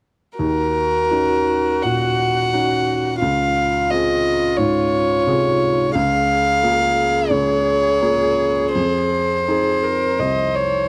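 Neoclassical piano and strings in a fragile, longing mood, cut from a longer piece and played with rubato over uneven beats, as a rich, pure violin carries a floating sul tasto melody up front while a felt-muted upright piano gives soft, mellow, intimate accompaniment and a warm viola adds airy-bowed sul tasto lines with light vibrato, the harmony moving through Ebm7, Dbmaj7, Bbm7/Db and Fm7 in a dry, close 1970s-style studio sound with light reverb.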